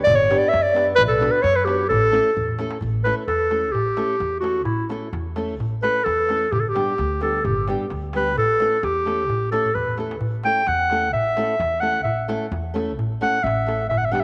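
A mellow, classically styled clarinet sits up front over dark, woody pizzicato upright bass from the start of this wild, virtuosic Balkan wedding-band excerpt in swung 2/4 at 130 BPM in A mixolydian, soon joined by crisp, hard-handed metal-shell darbuka and small, fingerpicked nylon-string guitar with fresh strings and finger squeak, before a darbuka fill leads into a clarinet solo from 2.8 seconds that runs to the end over G, B minor and A chords in a wet plate reverb.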